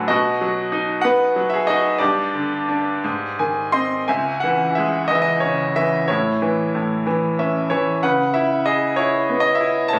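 Swaying in a rubato 6/8 at roughly 56-64 BPM in dotted quarters, this short fragment of a lyrical classical piece for solo piano feels wistful and dark as it drifts over B, G5 and G# harmonies before settling into C# minor at 4.1 s, then moving through A to C#m7. The bright grand piano sits up front with a brilliant, intimate tone, long sustain and audible action noise, adding brief fills from 3.0 to 4.1 s and again around 7.1 s. A light reverb surrounds it, with the close, informal character of a phone capturing the room.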